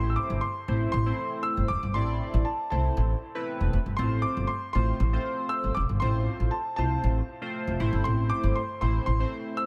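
Confident and energetic, this short dance-pop excerpt moves at 118 BPM in a straight 4/4, set in A minor and cut from a longer piece. A polished, present grand piano carries the melody high up, from A5 to E6, its notes trailed by dub echo. Beneath it, a chorused polysynth fills in the accompaniment with a glossy, retro tone built from pulse and sawtooth waves, with pulse-width modulation, a sub octave, a filter sweep and a phaser adding movement to its sustained, mellow sound. An upright bass sits up front in the mix, plucked with a woody, acoustic character on steel strings, and drops out at 9.2 seconds while the piano and synth carry on to 9.7 seconds. The harmony moves from A minor to F at 4.0 seconds and back to A minor at 7.8 seconds, all wrapped in light reverb and a small-room ambience within an echo-heavy mix.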